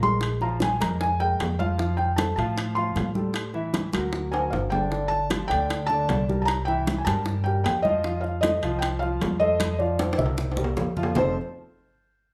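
Afro-Cuban jazz at 154 BPM with a sophisticated, sunny mood, as a soft, dark felt-muted upright piano carries the melody up front over a natural-sounding grand piano accompaniment, a woody, thumpy pizzicato upright bass, thick-skinned congas, round low-tuned bongos and ringing metal-shell timbales, with drum fills at 4.3 s and 9.6 s, the band playing live in one room with moderate large studio reverb, lossy compression artefacts and a faint mains hum.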